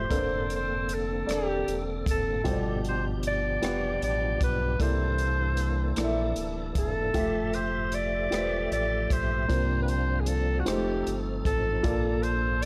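Slow gospel in 6/8 at 51 BPM in F major, this reverent, uplifting excerpt from a longer piece is led by a vintage-toned alto saxophone with vibrato, sitting up front as the solo melody voice. A woody, intimate upright piano with audible action noise provides accompaniment, and a full tonewheel organ holds sustained chords through a slow rotary speaker with light overdrive and chorus vibrato, while a deep, round sub bass and an airy, polished drum kit with a punchy kick, hi-hat and rim click keep a straight feel. The harmony moves from Bbmaj9/F through G7, C13 and Fmaj9 to C9sus4 and F7 before settling on Bbmaj7, all set in light reverb.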